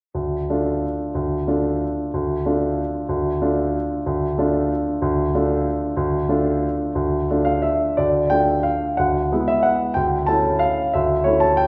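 Classical piano waltz in 3/4, played with rubato, carries a bittersweet, wistful mood in this short cut from a longer piece. A solo concert grand with a clear, polished tone and deep bass rests on a wet recital hall reverb, heard from further back in the room. After an opening section on a single minor harmony, a new passage begins at 8.0 seconds, its chords shifting at 9.0 and 10.0 seconds over a D in the bass.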